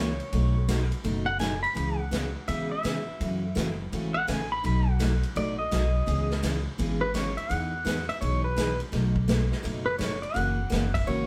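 Western swing country at a brisk 167 BPM with a playful swing, where an up-front pedal steel guitar takes a clean, compressed solo with fingerpicks and volume swells over a bright, full-bodied picked acoustic guitar, a woody, thumpy pizzicato upright bass and a swinging big-band drum kit with a punchy kick, moving through jazzy seventh chords in a small, lively room.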